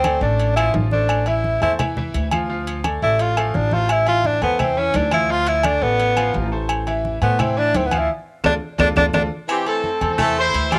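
A breathy, lightly vibratoed tenor saxophone solo with a cassette-tape tint leads this passionate, danceable salsa cut in A minor at 172 BPM, over a growly, thumpy pizzicato upright bass, ringing agogo bells and timbales, woody claves in the background, bright low-tuned congas and a brilliant grand piano with audible action noise and plate reverb, until a band accent from 8.1 s and a drum fill at 8.8 s hand off at 9.5 s to a punchy, roomy horn section backed by a baritone saxophone second line.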